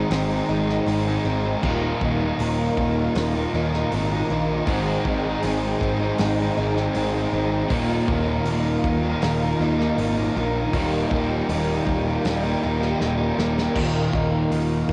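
An up-front overdriven electric guitar, its riff trailed by reverse reverb and cassette-tape wear, leads this wistful, blissful shoegaze and dream-pop rock passage at 79 BPM in Eb major, dropping out at 13.7 seconds. Around it sit a bright, double-tracked crunchy guitar riff in the background, a very quiet hollow-body semi-hollow guitar riff, shimmering octave-doubled arpeggios from a very quiet jumbo twelve-string acoustic with finger squeak, and a round, dark fuzz-laden electric bass. A smooth, warbling vintage sawtooth pad holds sustained chords under chorus and tape, while a loose indie drum kit with dark cymbals, a punchy kick and a rolled-off top plays a fill from 13.0 seconds in this dry home cassette recording cut from a longer piece.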